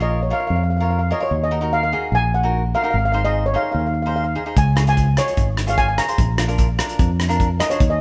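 A straight, bouncy 4/4 calypso groove carries this festive excerpt, where a shimmering, mellow steel pan leads the melody up front over crisp picked cavaquinho and a round fingered electric bass, with a tight-kicked soul drum kit of hi-hat, kick and rim click joining at 4.6 seconds, all set in a moderate stone room reverb as a band playing live together.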